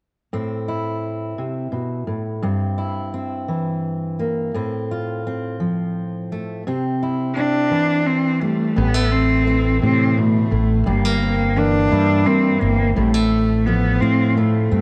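A slow, straight 6/8 at 57 BPM in dotted quarters carries this bittersweet, yearning folk piece in A minor, cut from a longer work. It opens on a dark, fingerpicked steel-string dreadnought guitar moving through Amadd9, C7/G, F/A and C. A single bowed cello with focused vibrato and a smooth top takes the melody at 7.4 seconds, and a round, direct fretless electric bass joins at 8.8 seconds as the second section begins, with all three parts sitting up front in a light studio reverb.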